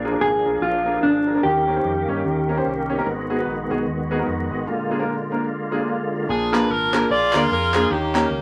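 Solemn and soulful, this swung uptempo gospel fragment sets an intimate grand piano with audible action noise and a round, punchy fingered electric bass alongside a reedy, bright tonewheel organ turning through a slow rotary speaker with key click until 6.3 seconds, while a dark, compressed electric guitar carries the melody early on before a clear saxophone section with light vibrato takes it up at 6.3 seconds, joined by hollow, close group handclaps at 6.5 seconds, inside a short wet studio reverb touched with vinyl crackle.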